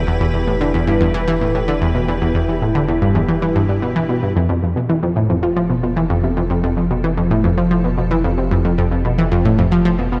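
An analog pluck sits up front in this hypnotic, mysterious excerpt of sequencer-driven ambient space music, playing a riff from 0.1 seconds with a bright, detuned sawtooth tone, a fast attack and a decaying filter pluck, colored by chorus and delay. Beneath it, an evolving wavetable pad holds sustained chords, its morphing unison voices blending sine and triangle shapes with ring modulation, a slow attack and long release, and treated with ensemble chorus, built-in reverb and phaser. A deep, round sine sub bass anchors the low end with a fast attack and sustained notes. At 112 BPM in a straight 4/4, the harmony rests on E minor before moving to Fadd9 at 4.4 seconds, where a second section begins. A moderate, lush hall reverb and a dark production give the piece a spacious, enveloping depth.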